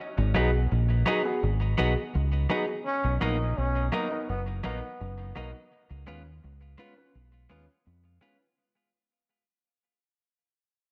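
A dark, round dub bass opens this serious, meditative reggae piece at 84 BPM. It is joined almost at once by a clean, picked electric guitar with tape echo and a woody upright piano playing stabs with long sustain. From 2.9 to 5.3 seconds a bright, distant trombone adds a second line, also treated with tape echo, over chords moving from Abm7 through Bmaj7 to Db7, and the whole fragment, cut from a longer track, sits in a small room with light reverb and fades out throughout.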